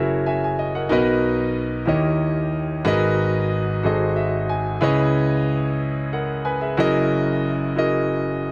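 Set in a lilting 6/8 with a straight feel, this short gospel passage from a longer piece moves at an unhurried, devotional pace and carries a hopeful, soulful mood. A clear concert grand piano plays alone throughout its 8.5 seconds, reaching from deep bass notes up into the upper register, and it sits up front with a natural tone. Rich extended harmony drives the passage, moving from F#9 through Bmaj7, D#7b9, G#m9 and G#7b9 to C#m9 before settling on a lush F#13. The piano adds short fills at the very start and again around 3.8 seconds, decorating the chord changes with gospel flavour. Light reverb and a dark, warm overall production give the instrument an intimate, churchlike glow.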